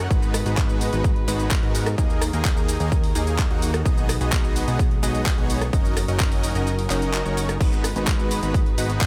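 Festival progressive house at 128 BPM in G# minor, emotional and euphoric, where a huge detuned supersaw riff with tape echo and a fat analog bass pump to the sidechain alongside sustained, sul tasto bowed chamber strings in the background, while an overdriven, punchy kick sits up front over a pop kit of crash, handclaps, warm hats, rim click and shaker, all within digital ambience as the chords move through G#m7, D#sus4, B6 and F#6 and the kick briefly drops out from 6.7 to 7.6 seconds.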